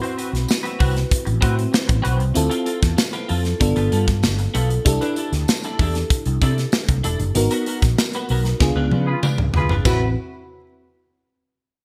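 A mellow fretless electric bass sits up front with a dark, round, punchy tone and ensemble chorus, anchoring this polished 1980s jazz-funk pop excerpt at 96 BPM in a straight 4/4 with a nocturnal, slick mood. A modern studio drum kit drives alongside it, its punchy kick, medium-tuned snare, toms, hi-hat, china cymbal and bright cymbals treated with gated reverb, while a jingly tambourine sits in the background from 0.5 seconds. A bell-like FM electric piano with a sparkling, fast-attack sound and analog chorus supplies the accompaniment, and a clean, twangy, scooped electric guitar with ensemble chorus plays a compressed, picked riff. The harmony moves through lush extended chords, from Am69 through Dm7, G9 and C69 to a rootless G#m9, where a band accent begins at 7.4 seconds, and on to a tense C#7b9, where a drum fill follows at 8.6 seconds. A mellow, soft-attack horn section with a vintage jazz-style blend enters as a second line at 9.1 seconds, just before the return to Am69, all framed by light studio reverb and a bright digital production sheen.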